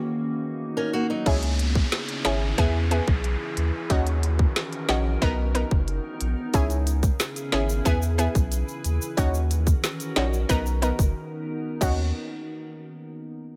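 Dancehall at 91 BPM in Eb phrygian, hypnotic and sultry, opening on a glassy, ethereal FM pad with ensemble chorus and built-in reverb pumping beneath a brief boxy fingerpicked swing-style acoustic guitar arpeggio, before a tight, woody island pop drum kit, a deep round sine sub bass and a detuned sawtooth analog pluck with a moving notch arrive at 1.3 seconds alongside a faint downlifter, while egg shaker and timbales join at 6.5 seconds over chords cycling through Bmaj7, Dbm, E and Ebm7 in this dry, close-sounding excerpt.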